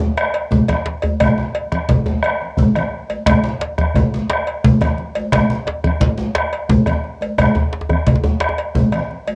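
A home cassette recording with a damp booth ambience captures this powerful, driving West African drum ensemble at 116 BPM in a straight 12/8, cut from a longer piece. A deep djembe with metal rattles and hard hands opens at 0.0 s. It is soon joined by a round bombo, both sounding distant in a large room yet up front, along with thick-skinned, low-tuned congas in a smaller space. A second djembe, tight and cracking and struck with hard hands, sits close, while a metallic cowbell rings close and dry until the end at 9.4 s.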